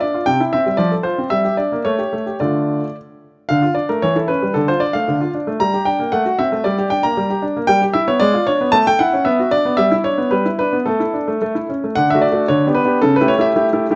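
Playful and graceful, this short excerpt from a longer classical-period piano sonatina moves at 114 BPM in a straight 2/4, set in D minor. A solo baby grand carries everything, its clear, intimate tone sitting up front with long sustain and audible action noise that adds a natural, close-up presence. The piano spans from C3 to Bb5, and the harmony travels through minor-key turns such as Gm, C#dim/E and a G#dim7 before settling onto A. Around 12.0 seconds a new section opens with a brighter move to D and G/D, reaching A7/C# at 13.0 seconds. Detailed microphones capture the instrument closely, while a moderate recital hall reverb gives it a gentle sense of space.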